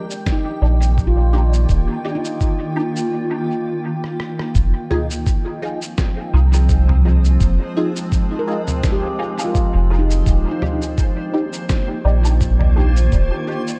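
A dark, warm ambient dub excerpt in F dorian at 84 BPM with a lightly swung 16th feel, where a round, deep analog bass sits up front beside a muffled, thumpy electronic kick and a pitched-down lo-fi sampler-style kit of cabasa, rim click, snare and toms soaked in dub echo, while a cloudy granular pad holds blurred chords, a nasal, detuned dub chord stab pulses through phaser and chorus, a ringing handpan plays meditative arpeggios that drop out for the break at 3.1 seconds before returning at 8.4, and a reversed, dreamy texture rises faintly in the background from 6.1 seconds, all moving between Ebmaj7 and Fm7 in a hazy, deep mood.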